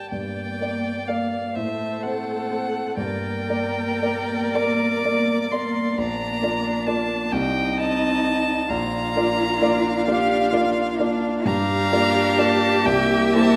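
A reverberant recital hall surrounds this excerpt from a slow, romantic movement for piano quintet in G minor, serene and lyrical, moving freely in 6/8 at around 36-45 BPM. Up front, a focused, smooth-topped solo violin sings the melody with vibrato over a second violin line of soft attack and portamento, while a warm grand piano carries the accompaniment and a dark viola adds its own expressive support in the background. At 1.6 s a distant cello joins with a second line full of vibrato and portamento, as the harmony drifts from G minor toward B-flat before closing on a C7 chord.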